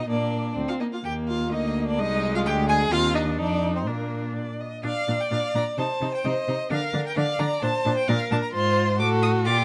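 Lively and cheerful, this short passage from a quick classical-period movement for string quartet moves in a flexible, rubato two-beat feel. The first violin carries the melody with a focused, smooth-topped tone and vibrato, while a second violin enters at 0.1 seconds on a supporting line, its bowing expressive and marked by portamento. Beneath them, the viola fills in the accompaniment with a rich, close sound and soft attacks, and the cello anchors the bass, placed up front with a warm tone, vibrato and sliding portamento of its own. Each part is played by a single player, and the harmony moves through bright major chords touched by minor and diminished colours before the music shifts into a second section at 4.8 seconds. A moderate stone-room reverb gives the ensemble a resonant, lifelike space.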